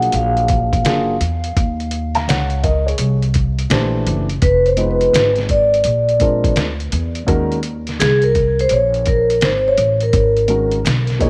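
A soft-mallet vibraphone carries the melody in this mellow, smoky jazz-hop piece, its metallic, ringing tone colored by slow motor vibrato and tape echo; it takes a solo at 7.3 s and drops out at 10.7 s. Beneath it, a dark, boxy grand piano supplies the chords. A woody pizzicato upright bass sits up front alongside a muffled, pitched-down, overdriven sampler-style drum kit with a thumpy kick, fat snare and hi-hat, and light reverb and small-room ambience give this lo-fi, sixteenth-note-swung excerpt an intimate, hazy feel.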